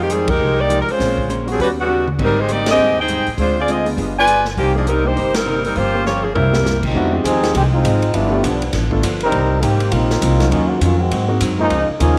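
Big band swing at a brisk 202 BPM, swinging and dramatic, opens in C minor with a clear, up-front saxophone section carrying the melody with vibrato and a touch of tape echo, over woody pizzicato upright bass, a dark, clean hollow-body guitar and a background concert grand piano, while an airy, polished drum kit with dark cymbals and a punchy kick drives band accents and fills. At 6.8 seconds the saxophones stop and a bright, soft-attacked trombone section takes a solo as the music moves to F minor, running through rich extended and altered jazz chords. The whole band sits in a moderate echo-chamber reverb, and the passage is cut from a longer piece.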